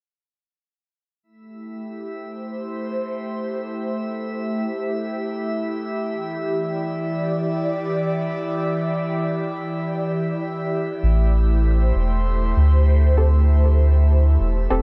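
Dark, hazy production with light reverb opens this spacious ambient passage in A minor at 98 BPM, cut from a longer piece, where an airy, breathy pad with chorus and phaser holds sustained chords from 1.5 seconds, joined almost at once by a glassy, drifting sine texture carrying bright overtones in its own reverb. The harmony moves from Am7 to Em7 and back, and at 11.0 seconds a deep, round dub sub bass arrives up front. Near the close, a muted, filtered dub chord stab with chorus and dub echo enters at 13.2 seconds.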